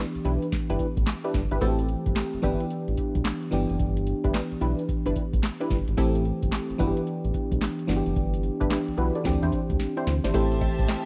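A booming analog drum machine sits up front with a deep kick, crisp snare, metallic hats and handclaps, driving a slick, punchy new jack swing groove in E minor at 110 BPM with a swung sixteenth feel. A glassy, bell-like FM electric piano and a funky, dark polysynth comp with chorus and tape echo voice chords such as Em7, Am7 and G6 over a round analog bass, all in a dry, close 1970s-style studio sound with digital ambience. After a drum fill, a lush, clear string section and a cowbell in the background enter at 10.3 seconds as this short cut from a longer piece moves to Am7.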